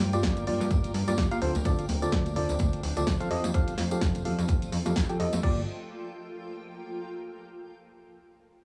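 A hollow, dark organ stab sits up front with chorus, delay, sidechain pumping and a cassette-tape tint, driving this soulful, energetic piano house fragment over a punchy, funky sawtooth bass with tube saturation and pumping, a dry electronic kick, a layered house kit with bright hats, close, hard-handed congas and tambourine, and a blurred, evolving granular pad with its own reverb and tape colour that drifts alone from 5.7 s to 7.3 s.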